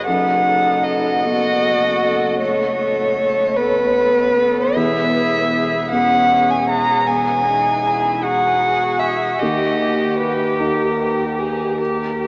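Melancholic and reflective, this fragment of neoclassical piano and strings drifts at 51 BPM in a rubato 6/8, tuned to A4 = 436 Hz, and moves through B7/F#, Eadd9 and D# chords. An up-front violin played con sordino carries the veiled melody with vibrato and portamento, while a lightly vibrato cello sings a second line. A close viola and a thick-felted vintage upright piano, whose action noise is audible, fill in the dark accompaniment above a soft-attacked double bass. The whole ensemble sits in a vast, echoing space with a huge wet reverb, yet it comes through with a small-speaker sound.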